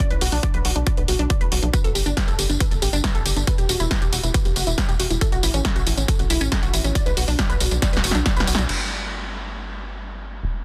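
Uplifting trance at 138 BPM in a bittersweet, soaring mood, cut from a longer piece: a lush, detuned unison pluck plays dark arpeggios through phaser, cassette tape grit, tape echo and sidechain pumping over a chord cycle of Bm, Gsus2, Emadd9 and A6. A layered, tape-warm electronic kick and an up-front analog drum machine with punchy snare, hi-hat, tambourine and crash drive the groove beneath a tight, sawtooth-and-square sequencer bass with ring modulation and its own sidechain pumping. A drum fill from 7.8 seconds leads to a band accent at 8.5, and once the other parts drop out by 8.8 seconds the bass carries on alone until 10.6 seconds in a dry, dense, heavily limited mix.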